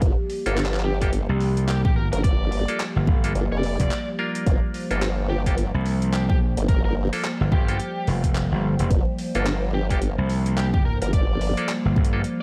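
A warbly, nostalgic tape-like pad, a detuned formant-sweep wobble bass, a punchy layered electronic kick and a pitched-down, gritty boom bap kit of handclaps and hi-hat open this funky, swaggering glitch hop excerpt at 108 BPM in G minor over a Gm7 chord with a swung 16th-note feel, before a twangy, hollow clav adds pumping stabs with analog delay at 0.5 seconds, a biting, overdriven lead guitar picks out a melody, and a bright, up-front slap bass enters at 1.3 seconds, with vinyl crackle throughout until a break at 12.2 seconds.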